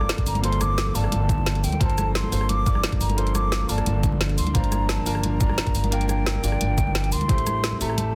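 A straight 4/4 drum and bass rhythm rolls along at 175 BPM in this dreamy liquid drum and bass fragment in G minor, with a gritty, pitched-up electronic kick entering at 0.2 s beneath an electronic kit of woody snare, bright hats, rim click and shaker, plus very quiet ringing congas. A dark, pizzicato upright bass with gut strings sits up front, while a smooth vintage grand piano and a soft, breathy pad with chorus and sidechain pumping hold chords moving from Gm11 to C9sus4/G and Am7. Above them a hollow, pure concert flute with vibrato and delay carries the melody, and the whole mix sits in light studio reverb on a dense, heavily limited master.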